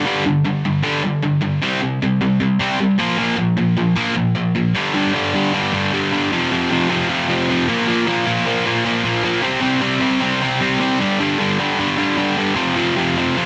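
In a straight 4/4 at 153 BPM, this upbeat, rowdy punk fragment, cut from a longer piece and tuned to A4 = 438 Hz, features a lone distorted electric guitar, bright, picked and double-tracked up front with delay and light reverb, as it drives power chords from G5 through C5 and Bb5 before a new section at 4.8 s returns to G5 and then brings in F5 over a dense, heavily limited modern master.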